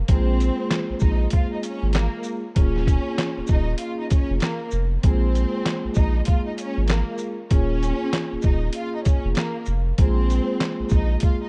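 A dark, warm production bathed in digital ambience frames this moody, tough boom-bap hip-hop fragment, its swung sixteenth-note feel carried up front by a gritty, pitched-down sampler drum kit with a thumpy kick, medium-tuned snare, handclaps, hi-hat and shaker. A deep, saturated sub bass anchors the low end, while a mellow soft-mallet vibraphone with slow motor vibrato rings in a boxy small room beneath a lush, expressive bowed violin section treated with tape echo. The harmony moves between Bbm9 and Eb9sus4 before settling on Bb7sus2 at 10.0 seconds.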